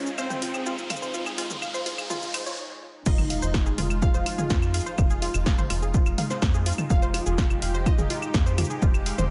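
A light reverb and digital ambience frame this short cut from a longer melodic techno piece in F minor, dark and dramatic at 125 BPM in a straight 4/4. It opens on an Ebsus4 build-up: a riser and impact rise over a filter sweep, a swarming, tense drone sits barely audible beneath, and a punchy analog drum machine enters at 0.1 seconds with claves, crash, hi-hat, shaker, snare and toms, its tape-warm snare re-recorded in a small room. After a brief stop from 2.6 seconds, the drop lands at 3.1 seconds on Fm7, bringing in an up-front electronic kick alongside the impact. A tight, driving sequencer bass with a sawtooth and ring-modulated bite anchors the low end, while a lush, detuned unison pluck spins arpeggios through tape echo and a lush pad holds sustained chords under chorus and phaser, with bass, pluck and pad all pumping against the sidechain. On top, a thick, bold unison lead with vibrato and delay carries the melody, joined by a very quiet, crystalline wavetable pluck playing a second line an octave higher.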